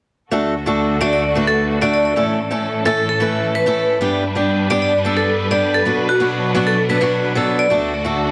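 A ringing, metallic vibraphone struck with medium hard mallets carries the melody from 1.0 s to 7.8 s, its medium motor vibrato shimmering through a delay in this triumphant, euphoric slice of festival progressive house at 130 BPM in D major. Up front beside it, a boxy, fingerpicked acoustic guitar with a swing-style touch plays accompaniment through its own delay. A clear, focused studio string section sustains bowed chords with a smooth top and lush ensemble vibrato, softened by a low-pass filter, moving through D, A, G and B minor before returning to D. A crisp, layered electronic hi-hat sits barely audible beneath the other parts. Moderate, lush hall reverb lends the mix a studio ambience, and the dense, heavily limited modern master keeps this short passage, cut from a longer piece, full.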